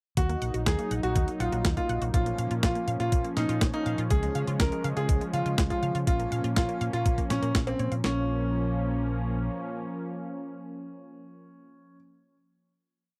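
A straight 4/4 four-on-the-floor kick and disco machine beat from two clean 12-bit drum machines, thumpy and tape-warm, drive this melodramatic, nostalgic Italo disco piece in Bb minor at 122 BPM, where a brilliant, up-front concert grand piano repeats a riff melody through tape echo over a smooth, chorused sawtooth pad, an octave-jumping round fingered electric bass with tube saturation, and a warbling, detuned unison pluck arpeggio in the background, all in a dry, close 1970s-style studio sound, with a band accent at 7.5 s before the drums drop away between 8.0 and 8.2 s and the bass stops at 9.5 s, while the piano and pad hold a final chord until 12.0 s.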